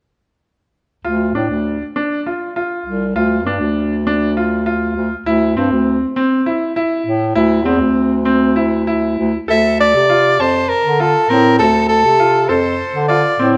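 Set in an uneven 7/8 metre at 200 BPM counted in eighths with a straight feel, this pensive, hypnotic piece of contemporary chamber music is a short excerpt cut from a longer work in D minor. A bright grand piano with long sustain spins arpeggios up front between C4 and A5. Beneath it, a warm bass clarinet in a classical style carries the bass line from C2 to D3. The harmony rests on D minor, shifts to C over D at 5.3 seconds, and returns to D minor at 9.5 seconds, where a mellow soprano saxophone enters with a jazz-style melody between A4 and E5, its vibrato and smooth top sitting louder than the other two parts. A moderate recital hall reverb lends the trio a sense of space.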